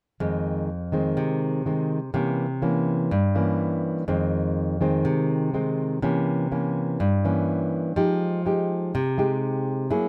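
Closely miked and nearly dry, this short passage of a longer bossa nova places a solo nylon-string guitar up front, its acoustic, thumb-plucked tone warm and classical in character. The wistful, intimate mood rests on a straight feel as the guitar alternates Fm7 and C7b9 before moving to a closing Fm9 at 8.0 seconds, continuing until 10.1 seconds.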